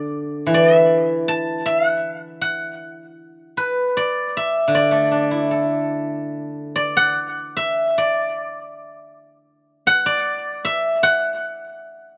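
The dry, open-air sound places a solo steel-string zither up front, its bright, silvery tone ringing out with a short slapback echo. This flowing, elegant passage of Chinese traditional music is cut from a longer piece and sits in the D gong mode at around 77 BPM in 4/4, though the rubato keeps the beats uneven. Plucked with fingerpicks across a range from D3 to A5, the zither moves into a new section at 6.3 seconds and carries on alone until 12.2 seconds.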